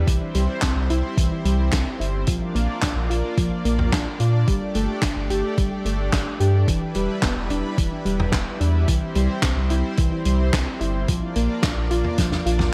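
Synthwave in a straight 4/4, dreamy and romantic, this short cut from a longer piece moves through a C, Bb, Gsus2, Em7 progression that circles back to C and Bb. A lush, detuned sawtooth pad holds sustained chords with a warbling chorus shimmer and sidechain pumping, while a deep, round analog bass sits up front with the same pumping breath. A soft pluck with a gentle noise layer and filter sweep spins mellow arpeggios, smeared by chorus and a digital delay. An overdriven, thumpy electronic kick anchors the beat, joined by a loose indie kit of snare, hi-hat, toms and handclaps that sounds gritty and saturated, with a rolled-off top and gated reverb. A drum fill runs from 12.2 to 12.7 seconds, and the kick drops out shortly after it begins, at 12.3 seconds, all set in a small room ambience.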